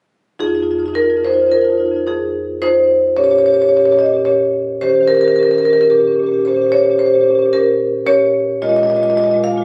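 Caught on a phone in a stone room, the sound carries a moderate reverb and a compressed closeness, with the marimba placed up front. This short excerpt from a longer contemporary classical piece for solo marimba in F minor moves in a rubato 5/4 around 110 BPM, with a hypnotic, flowing mood from 0.4 to 9.6 seconds. Played with medium hard mallets across a span from F2 to F5, the marimba's warm tone moves through Fm7, Bbm6 and Eb7 before settling on Fm7 over Bb at 8.6 seconds.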